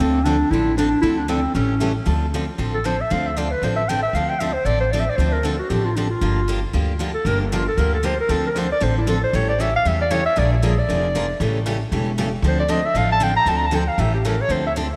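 This swinging, virtuosic excerpt of acoustic string swing opens with clarinet, upright bass and two picked steel-string guitars together. The clarinet sits up front with light vibrato, subtone and scooped notes, and takes a solo from 2.1 s over a woody, thumpy pizzicato bass on gut strings. A bright dreadnought guitar with audible finger squeak plays accompaniment throughout, while a boxy parlour guitar, plugged in and in the background, drops out at 1.9 s and returns at 8.3 s, all in a dreamy mix soaked in lush hall reverb, with delay on the clarinet, moving through chords such as Dm7, Gm7, Bb7 and A7.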